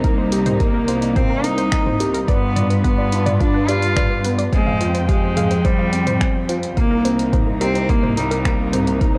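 A dark, intimate production with light small-room reverb frames this melancholic piano and strings electronica cut from a longer piece, moving at 107 BPM in C minor over a Cm7, G7, Fmadd9 progression. Up front, a reedy gut-string solo cello carries the melody with delay until 8.7 seconds, while a felt-muted upright piano with audible action noise plays a delayed riff and a clear, smooth cello section bows the bass line with sidechain pumping. Behind them sit a veiled, con sordino chamber string section holding pumping sustained chords and a warbling, lo-fi pluck spinning chorused, delayed arpeggios, all driven by a tape-warm deep house kit of finger snaps, hi-hat and toms under a prominent deep electronic kick.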